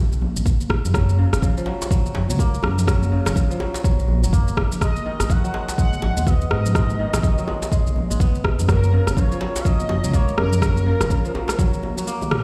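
Heard through a big sound system in a bare room with a large studio reverb, this earthy, spiritual afro house excerpt at 124 BPM swings over G#m7 and F#maj7, with an up-front, deep, tape-warm electronic kick, a layered deep house kit of rim click, shaker and toms, soft-handed congas in the background and a tight, cracking djembe under a dark, smooth gliding synth bass and a ringing, crisp fingerpicked kora, both pumping to the sidechain, before an expressive sawtooth synth lead with chorus, vibrato and delay enters at 4.8 seconds and a drum fill lands at 12.2 seconds.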